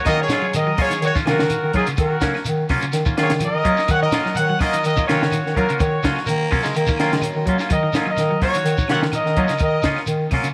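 Driving and defiant, this afrobeat excerpt rides a lightly swung 4/4 groove over a sustained Ebm9 harmony. A bright, punchy horn section carries the melody up front with light vibrato, joined by a distant, roomy trumpet on a second line in the background. A dark, close-miked bass clarinet holds down the bass, while a compact cocktail drum kit with a punchy kick, high-tuned snare and rolled-off top drives the rhythm alongside grainy shekere and very quiet, woody claves. Two electric guitars fill the middle: a clean, picked one plays arpeggios in the background and a twangy, fingered one adds stabs. Between 6.3 and 7.6 seconds a growling, raspy baritone saxophone cuts in briefly with tape echo, all within a small room ambience, echo chamber reverb and a faint mains hum.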